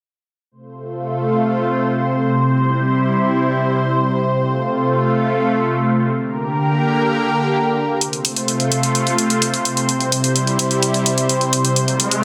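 In a straight 4/4 pulse, this triumphant, uplifting festival progressive house excerpt opens at 0.8 seconds with a thick, detuned sawtooth-and-square unison pad sustaining slow-attack chords through F, C and G minor, its bright tone shimmering with chorus and phaser. An up-front, layered electronic hi-hat joins at 8.0 seconds, and a brief electronic riser enters at 11.9 seconds just before the cut. A lush hall reverb surrounds the parts, and the dense, heavily limited master gives the sound a modern, polished weight.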